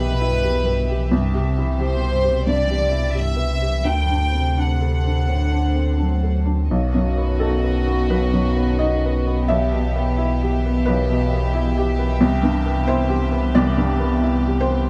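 A deep, full sub bass with octave sits up front beside a mellow felt-muted upright piano in this fragile, melancholic neoclassical piano-and-strings fragment, moving in a rubato 4/4 as a distant, floating violin section carries the melody over a woody cello second line with vibrato and portamento, soft sustained chords from an intimate chamber string section, and a dark viola that joins in the background at 6.7 s, all in a moderate studio room.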